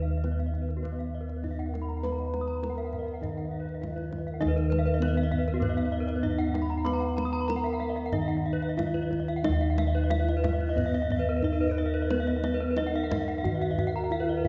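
Hypnotic and shimmering, this Balinese gamelan passage, cut from a longer piece, moves in a straight 4/4 at 90-101 BPM in Eb pelog. A bronze metallophone struck with padded disc mallets carries the soft melody, its paired tuning producing shimmering beats, while a lower metallophone played with a wooden mallet supplies ringing accompaniment until it stops at 9.4 seconds. Above them, two more metallophones spin arpeggios with horn mallets: one bright and set forward, the other dark and smooth, both shimmering from their paired tuning. Up front, round, beating bossed gongs played with padded beaters anchor the bass, and a deep, dry kendang sits close but in the background from 0.1 seconds. An airy, hollow bamboo xiao with gentle vibrato and soft attacks drifts in as a mellow second line at 1.7 seconds, falls away, then returns at 10.7 seconds, shortly after the music moves into a new section at 9.4 seconds. 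Everything blooms in the wet, three-second reverb of a church or concert hall, with a softened top end.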